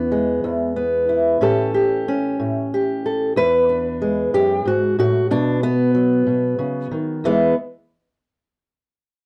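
A fingerpicked old ladder-braced acoustic guitar opens this swaggering, gritty acoustic country blues excerpt, playing alone and up front in 12/8 with a straight feel, its old strings giving a woody, boxy tone. It moves from E through A7 and E7 to B before landing back on E at 7.2 s, and the guitar stops at 7.5 s. Light reverb and a dark production leave the cut sounding intimate and earthy.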